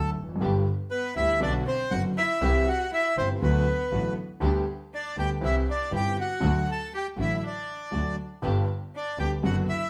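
A reedy, bright bandoneon carries the melody up front in this nostalgic, elegant tango excerpt, moving at a rubato 120 BPM in G major over a progression from G through Bm, C and D. A rich, boxy bowed violin with vibrato sings a second line beneath it, while a polished grand piano with audible action noise sits intimately present in the accompaniment and a focused, bowed double bass anchors the low end. From 0.4 seconds a dark, veiled string section, played con sordino with soft attacks, adds quiet stabs in the background, all captured as a band playing live in a stone room with a wet reverb.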